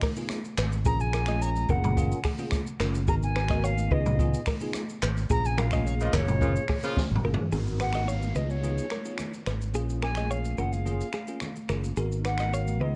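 A straight 4/4 afrobeats groove with a joyful, sunny mood rides on an up-front acoustic jazz kit with a high-tuned snare and boomy kick and a round, punchy fingered electric bass, while a twangy clean electric guitar riff, a bell-like tine electric piano with ensemble chorus and ringing high-tuned congas in the background support a distant, airy flute melody; a tight, vintage horn section in octave doubling adds a brief second line at 6.0 seconds, a drum fill at 7.0 seconds leads into a break where a faint electronic downlifter sits in the background, and the mix carries studio reverb and the warbly pitch drift of worn cassette tape.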